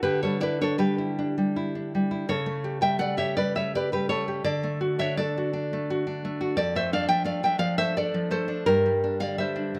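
Melancholic and passionate, this short romantic piece for solo classical guitar moves in a flexible, rubato 3/4 at roughly 78-88 BPM. The nylon-string guitar carries everything alone from 0.0 to 9.8 seconds, fingerpicked with a dark, full-bodied tone and placed up front, spanning F2 to G5. The harmony begins in D major, passing from Em7/D through A7/C# to a settling D chord, then turns to D minor at 6.6 seconds with Dm/F and a closing Gm, shading the passage toward sorrow. Close, detailed microphones capture the instrument's acoustic character, wrapped in light reverb. The tuning sits slightly high at A4 = 441 Hz, and the fragment is cut from a longer piece.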